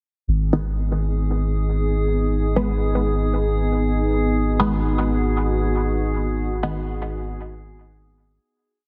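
Cavernous and deep, this short dub techno piece in G# minor floats in free time, resting on a single G# minor chord for its whole length. A soft, round sub bass holds the root up front from 0.3 seconds, while a warbling, lo-fi tape-like pad sustains dark, nostalgic chords above it, its detuned tone bathed in chorus and built-in reverb. Sparse, muted chord stabs enter at 0.5 seconds, a filtered pluck of one shape moved in parallel, colored by phaser and trailing dub echo before they stop at 6.7 seconds. From 1.0 seconds a glassy texture of drifting overtones holds a calm high note, softened by chorus and reverb. The mix sits in light digital ambience with a heavily compressed, radio-like sound, and the whole piece fades out from 5.7 seconds to its close.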